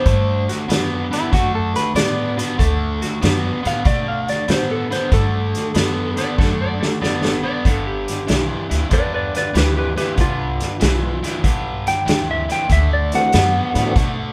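Electric blues shuffle at 95 BPM in D mixolydian, soulful and swaggering, with a punchy, up-front vintage kit and woody pizzicato upright bass under a bright, crunchy overdriven guitar riff bathed in spring reverb, while a slightly broken-up slide guitar carries the melody from 1.1 s over a darker fingerpicked slide second line that drops out at 8.8 s, a drum fill leads into the G7 at 7.6 s, and a lightly overdriven tonewheel organ with slow rotary and chorus vibrato flickers in briefly at 13.1 s, all captured live in one large studio room.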